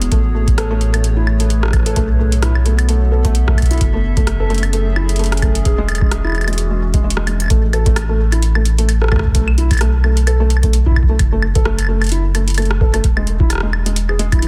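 A swung 130 BPM groove in 4/4 drives this wistful, intricate IDM excerpt in A major, where a deep electronic kick and a booming analog drum machine with metallic hi-hats, rim clicks, woodblock, a softly clipped snare and tape echo sit over a round sine sub bass, while a felt-muted upright piano spins intimate arpeggios with audible action noise and tape echo, and a warbling, detuned lo-fi pad holds sustained chords through chorus, phaser and built-in reverb until it stops at 7.5 s, just after the kick briefly drops out from 7.0 s, in a dense, heavily limited master with light reverb.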